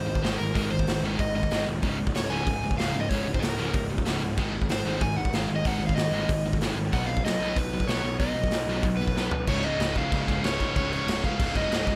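A driving, straight 4/4 pulse from a raw, gritty garage drum kit, punchy kick and medium-tuned snare up front in a bright, pumping stone room, powers this rowdy, rebellious punk rock excerpt, where a warm hollow-body overdriven guitar carries the melody over a stack of riffing guitars, one bright and distorted in the background, one dark and sludgy, and one thick, double-tracked fuzz, all very quiet or tucked back, alongside a growly, fuzzed, picked electric bass, with a drum fill at 9.2 seconds leading into a new section at 9.5 seconds under light reverb.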